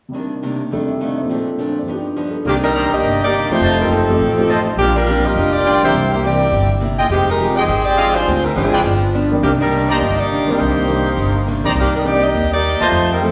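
Sultry and swinging, this fast jazz cut in C minor at 206 BPM opens with a dark, picked archtop guitar tucked in the background and a natural grand piano comping through Cm9 and F13 before a bright, loose saxophone section takes the up-front melody at 2.5 seconds over a woody pizzicato upright bass, while a clear trumpet section adds present, lightly vibrato stabs from 2.7 seconds, all set in a wet recital-hall reverb.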